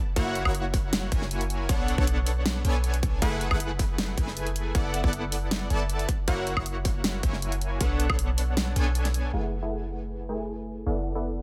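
A future bass drop opens on detuned supersaw stabs, punchy and up front, riding a sidechain pump through a low-pass filter and digital delay over chords that move from F#7 to Bm9, F#m11 and D69/F#. Beneath them a deep, boomy 808-style bass with a sine core and a noise layer pumps in step, its fast attack decaying into a dark tail. The half-time groove comes from a punchy, layered electronic kick and a produced pop kit of hi-hat, fat snare and woodblock. The kick ends at 8.2 seconds and the kit at 9.2 seconds, and at 9.3 seconds a new section begins on the stabs and bass alone. The mood is dreamy and lush, set in a digital ambience, and the passage is cut from a longer piece.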